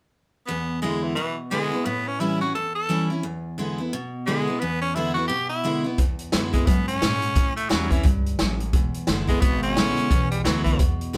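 A raspy, gritty tenor saxophone leads this rowdy, retro rockabilly excerpt, carrying the melody with an edgy vibrato and a punchy, up-front solo presence. Beside it, a bright, full-bodied steel-string acoustic guitar is picked as accompaniment, with audible finger squeak, over a swung 174 BPM groove in E mixolydian that moves between E7 and A7. At 6.0 seconds the upright bass and a vintage drum kit enter together, the bass plucked with a woody, thumpy gut-string tone and the kit adding a punchy kick, a medium-tuned snare and hi-hat with a natural room sound. The band plays live in one room, framed by moderate studio reverb.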